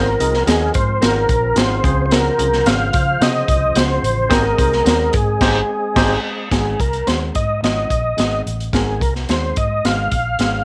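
A clear, key-clicking tonewheel organ carries the melody up front in this joyful, danceable slice of uptempo 1960s-style soul, backed by a gritty, saturated breakbeat kit with a punchy kick, a round foam-muted electric bass, a worn, slightly out-of-tune tine electric piano, a fat percussive organ with slow rotary swirl that drops out at 6.5 seconds, and a very quiet, mellow vibraphone second line that stops at 5.4 seconds, just before a band accent, all sitting in light reverb and studio ambience.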